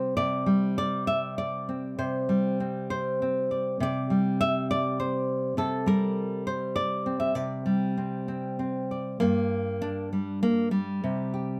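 Wistful and intimate, this short folk excerpt for solo nylon-string guitar moves at an unhurried 99 BPM in 3/4 with a rubato feel, fingerpicked across a range from G2 to E5. The guitar sits up front with a full-bodied, deep classical tone, and the close, detailed recording keeps the room dry. It rests on a Csus2 harmony before a new passage begins at 9.2 seconds, landing on a C5 at 11.0 seconds as the excerpt closes at 11.6 seconds.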